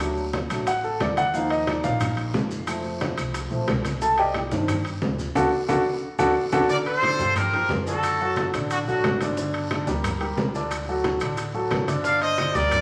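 A polished, up-front upright piano solos over dark, thumpy pizzicato upright bass, ringing metal-shell timbales, distant congas, soft round bongos, faint claves, raspy guiro and grainy maracas in this danceable, passionate G minor salsa excerpt at 179 BPM, where a drum fill and band accent from 5.4 s hand off to a tight, bright trumpet section entering at 6.7 s with light vibrato, all bathed in a wet large-studio reverb and vinyl crackle.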